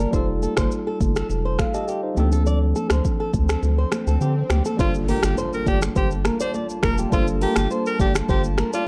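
Mellow and sultry, this afrobeats excerpt rides a produced afro-pop kit with a deep kick, metallic hats, snaps, rim clicks and shaker, up front beside a round, dark analog bass, while a clean tine electric piano, a fingerpicked flamenco guitar riff with fresh strings and high-tuned congas in the background fill out the groove over chords moving from F9 to Dm7. An electronic swell builds from 3.4 seconds as the kick drops out, and at 4.8 seconds an impact lands with an edgy, punchy alto saxophone melody carrying light vibrato and delay over a Gm9 chord. A hollow, flute-like pad with chorus slips in softly behind it at 5.4 seconds, all in a dry sound.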